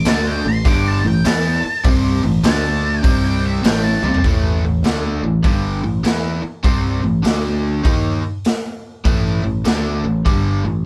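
An octave-fuzz lead guitar, dark and picked through wah and distortion, solos from the opening until 4.2 seconds over a smoky, heavy blues rock and southern rock groove at 100 BPM in A minor with a swung 4/4 feel, backed by a bright, double-tracked overdriven rhythm guitar riff up front, a growly, direct fingered electric bass, and a gritty, saturated garage drum kit with a punchy kick and pumping small-room sound that plays a fill at 3.9 seconds, all captured as a band playing live in one room with light reverb in this cut from a longer piece.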